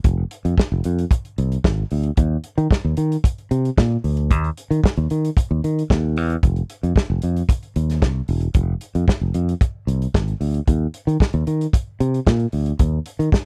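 A fingered electric bass and a soul drum kit start together, setting up a danceable, driving disco groove in a straight four-four feel. The bass is bright, growly and punchy, with a direct, amped sound sitting up front, and its range spans a low E1 to Eb3. The drum kit, made up of hi-hat, kick and snare, sounds acoustic, with a tight kick, a medium-tuned snare and a pumping room character from its tight booth. Both parts sit forward in a dry mix with little reverb, so the rhythm section feels immediate and physical. This short passage is cut from a longer piece: the bass stops at 13.3 seconds, and the drums carry on briefly to 13.5 seconds.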